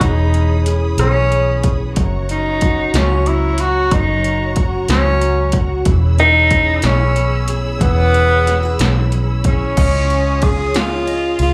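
Heard through a venue's PA with club ambience and light reverb, this romantic, swaying six-eight pop ballad is an excerpt cut from a longer piece. A warm tenor saxophone carries the melody up front with vibrato, its distant, roomy tone touched by slapback echo, over a double-tracked, full-bodied fingerpicked dreadnought guitar and a lush, bowed string section with a smooth top. A dark, foam-muted electric bass sits round and forward beside an overdriven electronic deep house kit with a deep kick, punchy snare and metallic hats, and the harmony moves to a C#add9 chord at 9.8 s.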